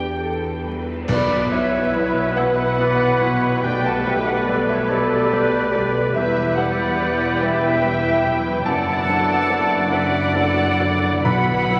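Moving and bittersweet, this rubato cinematic film-score passage in 6/8 is cut from a longer orchestral piece. Muted violin sections carry the melody and a second line with a veiled, con sordino sound, vibrato and a soft attack, over a lush viola section, a natural-sounding baby grand piano in the background, distant mellow French horn chords and a very quiet, ringing fingerpicked harp playing arpeggios, while a muted double bass section anchors the bass. At 1.1 seconds the full band accents the arrival of a Bsus4 chord, with dark clash cymbals, concert bass drum and round, soft-mallet timpani marking the moment. At the same point, an airy, hollow flute section and a clear, close-miked solo oboe join with second lines, and a very quiet cello section adds to the bass. The harmony moves through Gadd9/B, Emadd9 and D/F# before settling back on Bsus4, and the timpani returns briefly at 11.3 seconds. 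A wet scoring-stage reverb surrounds the orchestra, and a layer of vinyl crackle lends the recording an aged, nostalgic patina.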